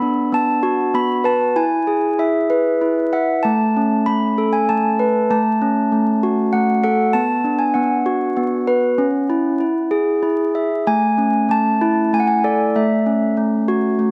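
Solo handbells carry this gentle, tender children's lullaby, their clear, ringing tones with medium clappers sitting up front across a span from A3 to B5. The short cut from a longer piece moves in an unhurried, rubato three-beat sway through chords such as Bm, E and Aadd9, restating its opening section at 10.9 seconds on A before drifting to F#m/A. A moderate spring reverb lets each bell hang in the air, while a vinyl crackle adds a nostalgic, bedtime-story haze.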